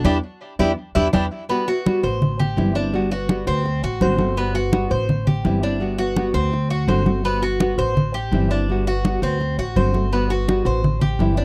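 Cuban son in the guajira vein, this sunny, warm-hearted clip moves at a brisk 167 BPM in straight 4/4 and sits in G major. The band opens together on an accent over Em7, and from 1.5 seconds it settles into a cycle of Gmaj7, Am7 and D7 that runs to the end at 11.4 seconds. Up front, the Cuban tres spins metallic, double-strung arpeggios, some strings doubled at the octave, touched with tape echo. Alongside it, the fingerpicked nylon-string guitar gives classical-style accompaniment, with audible finger squeak. The pizzicato upright bass is woody, dark and thumpy on gut strings, sitting forward in the mix, while soft hands on the congas draw out a bright, thin-skinned, damped tone. The dry, close 1970s-style studio sound carries little reverb, and the clip is cut from a longer piece.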